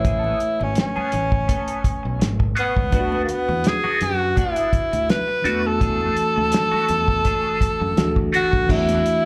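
Warm and lush, this short cut from a longer 1970s-style soul piece moves over a gentle swung 16th-note feel through Amaj9, D6 and E9sus4, with a breathy, whispered tenor saxophone carrying the melody up front, its soft attack, vibrato and scooped notes given an intimate slapback echo. Beneath it, a worn, slightly out-of-tune tine electric piano comps with the same echo, while a bright, scooped semi-hollow electric guitar plays a compressed riff through wah and analog chorus, and a punchy fingered bass holds the low end. A cloth-damped, thuddy drum kit with dark cymbals and a tight kick sits dry and up front, very quiet high-tuned congas played with soft hands add texture, and the whole performance sounds like a live gig heard through the venue's PA with light club reverb.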